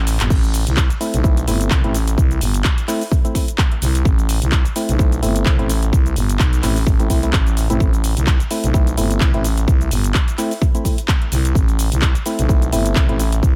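A 4/4 pulse at 128 BPM with 16th-note swing drives this bouncy, gritty bass house cut in A minor, opening on a brief drum fill as a growling, thick FM bass with overdrive and sidechain pumping sits up front beside a punchy, tape-warm electronic kick, while a dance kit of cabasa, crash cymbal, handclaps and metallic hi-hats fills in and a hollow, dark organ-like stab with chorus, delay and pumping joins at 1.0 seconds, the mix staying dry.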